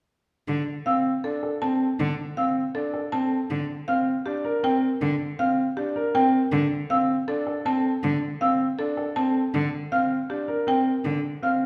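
Minimalist classical pattern music, hypnotic and propulsive, in a short cut from a longer piece. A clear, focused bowed cello holds a low D with vibrato from 0.5 seconds, and a buzzing, woody marimba struck with hard mallets carries the dry, percussive melody. A brilliant, up-front grand piano and a distant, airy flute with a soft attack play arpeggios over a chord cycle alternating between F and G minor, all set in a recital hall reverb that places the ensemble further back in the room.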